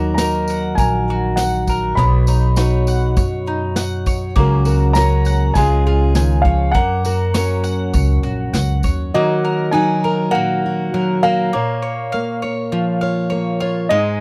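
Acoustic folk for a duo or small band, nostalgic and peaceful, moving at 100 BPM in a straight 4/4 and opening on a D# minor chord. A dark, mellow upright piano carries the melody over a fingerpicked, up-front steel-string guitar and softer picked mandolin arpeggios, while a woody, thumpy pizzicato upright bass, a brushed drum kit with a punchy kick and rolled-off top, and a jingly tambourine drive the first part until about 9.1 seconds. From there a bright, nasal resonator slide guitar adds a metallic second line, all captured in a dry, close 1970s-style studio sound and cut from a longer piece.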